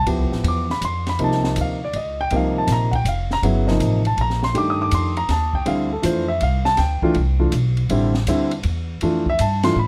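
A concert grand piano and an upright bass open this short modal jazz fragment together, setting a cool, intense mood in a swung three-four lilt. The piano sits up front with an intimate, natural tone, deep low end and audible action noise as it comps through Dm9 and Cm9 harmonies before returning to Dm9 at 5.7 seconds. The pizzicato upright bass is equally forward, woody and growly with the bite of steel strings, and it carries a warm body. An acoustic drum kit in a small room joins at 0.1 seconds, mixed lower than the other parts, with hi-hat, ride cymbal, snare and kick; its cymbals are dark, the snare is tuned high and the kick is boomy. Light reverb and a dark, warm production tie the trio together.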